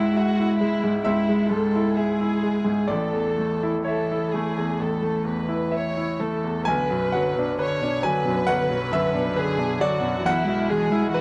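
Neoclassical piano and strings, melancholic and longing, drifting in rubato 4/4 at around 62-69 BPM in B dorian, in a short cut from a longer piece. A chamber violin section carries the melody with soft-attacked, sul tasto bowing and vibrato. A solo cello plays an intimate second line with light vibrato and an airy bow, and both strings sound throughout the full 11.2 seconds. A bright, polished grand piano sits up front as accompaniment over chords moving from C#m through A and Bm to E/B, in a dry, close 1970s-style studio sound with a touch of reverb.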